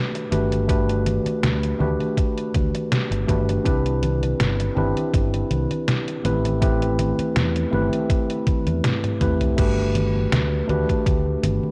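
Vaporwave with a faded, woozy mood, this clip from a longer piece moves at a relaxed 81 BPM in 4/4, with a light swing on the sixteenths, in G major. A mellow, clean tine electric piano sits up front playing the chords, colored by a subtle chorus and an analog delay, as the harmony moves from Gmaj7 to Cmaj9 and Am9. A detuned 8-bit drum machine with a sampler-style character brings congas, hi-hat, crash cymbal, toms and a medium-tuned snare forward in the mix, dressed in studio and gated reverb. Beneath it, a round, direct fingered electric bass holds the low end, while a thumpy electronic kick with its own studio reverb adds weight. A drum fill at 8.8 seconds leads into a new section at 9.6 seconds that returns to Gmaj7, and the whole recording carries a cassette tape haze.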